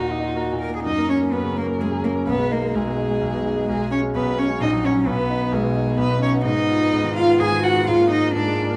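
This quick classical-period movement for piano trio, cut from a longer piece, moves at 128 BPM in 3/4 with a rubato feel in F# major, urgent and stormy in mood. The violin carries the melody with a rich, focused tone and vibrato, set at a distance, while the cello plays a second line sul tasto with an airy bow, soft attack and light vibrato, sounding close and intimate. Up front, the brilliant concert grand supplies the accompaniment with deep bass and long sustain, all three playing together throughout the 8.8 seconds inside a moderate recital-hall reverb captured by close, detailed microphones.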